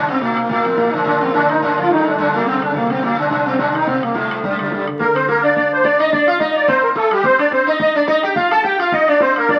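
Dark yet spirited, this lively Celtic reel in G minor races along at 214 BPM with a swung feel. It's cut from a longer piece and heard through the crackle of a very old 78 rpm record in a large studio room. A reedy, shimmering musette accordion carries the melody up front, and a bright, buzzing sitar with sympathetic strings plays a second line beside it. A thumb-plucked concert harp rings low underneath until 5.0 seconds and returns briefly at 9.5 seconds, while a tight, damped bodhran sits in the background.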